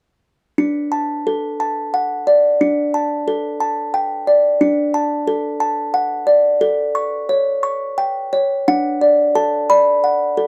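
A rubato 6/8 sway carries this tender, dreamy classical lullaby, a short fragment cut from a longer piece. A solo music box with a delicate, tinkling, plucked tone and the body of a large box sits up front, moving through D, Dsus4, D and A7 before settling back on D for a closing passage that starts at 8.7 seconds. The close, dry 1970s-style studio sound carries only a light touch of reverb.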